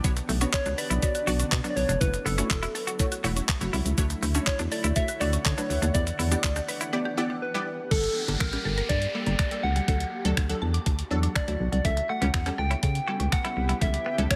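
Lightly reverberant and clean, this summery, carefree dance-pop excerpt moves at 122 BPM in D major, with a crisp, thumpy 8-bit drum machine of kick, snaps, handclaps, hi-hat and shaker sitting up front beside a punchy, dark FM bass. A lush, detuned unison pluck, a woody mallet-like synth arpeggio with delay and a shimmering, ethereal pad in the background all pump against the beat, while a soft, warbling keys-like lead carries the melody and a bright, twangy clean electric guitar plays a chorused riff. After a brief silence at 6.9 seconds, an electronic downlifter sweeps in at 7.9 seconds, and the guitar returns at 12.0 seconds.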